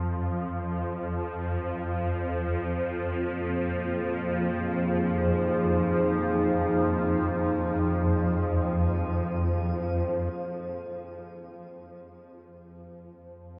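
A swarming, detuned drone sits up front through the whole 13.6-second excerpt from a longer dark ambient piece, its granular, evolving tone colored by a phaser and its own reverb. From 2.2 seconds a deep, nasal analog pad with a sub octave holds moody sustained chords under chorus and shimmer reverb, then stops at 10.3 seconds, leaving the tense drone to carry on alone. A huge, cavernous reverb and worn cassette tape with warbling pitch drift give the piece its vintage, dark atmosphere.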